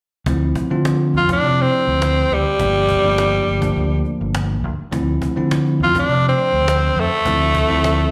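Smoky and brooding, this short cut of straight-eighth soul blues in D minor at 103 BPM sets a bell-like tine electric piano, a dark, round fingered electric bass and a woody cajon with faint snares under a raspy, gritty tenor saxophone that enters at 1.2 seconds, sitting up front with slapback echo and light vibrato, while the electric piano adds a fill at 7.8 seconds and the whole band carries the light reverb of a live gig heard through the venue's PA, with recital hall reverb.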